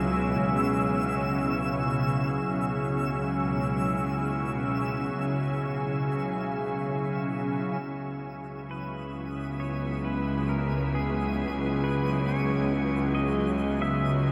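Spacious and melancholic, this slow ambient fragment in 3/4 at 68 BPM rests on a single C#m7 chord in C# minor, bathed in a huge ambient reverb with an 8.2-second decay. Up front, a pure, detuned organ-like pad with ensemble chorus and shimmer reverb holds sustained chords over a bright chamber cello section sounding a bowed low C# with light vibrato and tube saturation, while a twinkling granular texture sparkles high above. The cellos and texture fade out through the first 7.8 seconds before the pad fades in and the texture fades back in. At 8.7 seconds a clean, twangy pedal steel guitar takes the melody with fingerpicked slide lines and volume swells under shimmer reverb.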